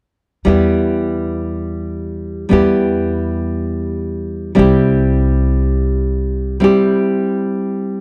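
A fingerpicked nylon-string guitar with a deep classical tone opens this bittersweet, virtuosic Balkan folk fragment at 0.4 s, joined at once by a woody, thumpy pizzicato upright bass on gut strings, both up front in a dry, close 1970s-style studio sound with light reverb as the harmony moves from E minor to C at 4.6 s and the bass drops out at 6.6 s, leaving the guitar alone.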